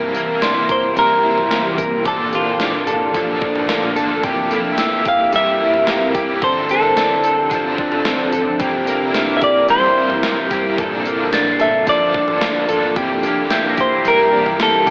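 A crunchy, bright, double-tracked overdriven guitar with tremolo and chorus, a cloudy, detuned granular pad and a clean, compressed direct-recorded electric guitar picking chorused, tape-echoed arpeggios open this floating, blissful dream pop excerpt at 110 BPM, joined at 0.1 s by a thumpy, overdriven 80s drum machine with gated reverb snare, tambourine and toms, then by a soft, bell-like glockenspiel with rubber mallets in the background and, at 0.7 s, an up-front, dark semi-hollow guitar melody, moving over C7, Bbmaj7 and Dm7 in a lush hall with an AM radio tone.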